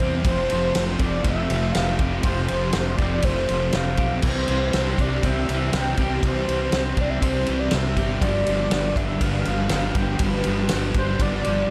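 Brooding and hazy, this short shoegaze and dream pop excerpt at 121 BPM sets a velvety, detuned synth lead with chorus and analog delay over a bright, clean semi-hollow guitar playing arpeggios, three picked guitar riffs (a double-tracked crunchy overdriven part in the background plus very quiet raw garage and dark fuzz lines), an up-front fuzzed fingered bass, and a loose indie drum kit with a punchy kick and a fat snare, all moving through Fadd9, Cadd9 and G7 in a dark production with small-room ambience.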